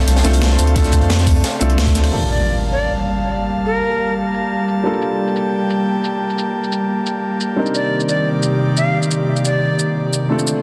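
A straight, rolling liquid drum and bass groove from a compressed sampler-style breakbeat kit of hi-hat, rim click, shaker and snare, joined in the opening drop by a crunchy, dark second breakbeat kit, a thumpy electronic kick and a thick saturated sub bass, carries this soulful cut from a longer piece. An intimate grand piano with audible action noise and digital delay accompanies while an airy, detuned pad with chorus holds the chords. An electronic impact lands at 2.1 s as a filter sweep runs across the drums, and a reedy jazz flute with vibrato, 12-bit sampler grit and delay plays the melody from 2.3 s and again from 7.7 s, set in a moderate plate reverb with a dense, heavily limited master.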